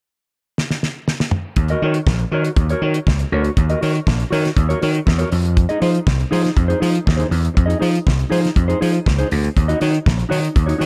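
A straight 4/4 disco groove at 120 BPM drives this glamorous excerpt in Eb dorian, cut from a longer piece. A damped 70s drum kit opens with a fill from 0.6 s, its dry, fat snare and tight kick sitting up front alongside hi-hat and toms. At 1.6 s a gritty slap bass and a mellow electric guitar enter together, the bass overdriven and growly, punchy and up front in the mix. The guitar plays a clean, fingered accompaniment, darker in tone and lower in level than the bass. The harmony moves from Ebm7 to Fm7 at 5.3 s and back to Ebm7, all within a small room reverb and a dark, warm production.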